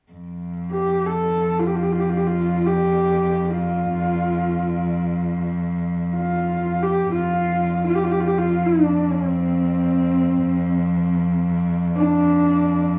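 In free time, this excerpt of proud, galloping Mongolian folk in an F gong mode opens at 0.1 s with a clear, focused bowed cello holding a vibrato-tinged drone on F2, joined at 0.7 s by a dark, woody, husky horsehead fiddle singing the melody between C4 and A4 with vibrato and portamento through a plate reverb, all captured as a cassette home recording with small room ambience and a moist studio reverb.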